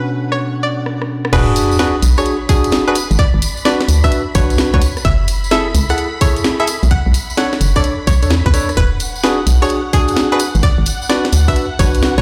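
UK garage in a two-step groove at 129 BPM with heavy 16th-note swing, this late-night, soulful excerpt opens with a barky, lightly overdriven tine electric piano stabbing through a filter sweep beside a twangy, nasal resonator pluck melody and a silky string machine pad pumping softly in the background, while the garage kit's cracking snare, hi-hat, rim clicks and crash lead into a short break and drum fill. At 1.3 s the drop lands with an impact and a sub drop, bringing in a hollow, knocking FM bass that sits dark and up front with tube saturation, a tight layered electronic kick and a jingly acoustic tambourine. Chords cycle through Bm7, E9, G#m7b5 and F#m7, with dub echo on the electric piano and tape echo on the pluck, all heard through light reverb in a big, bare room.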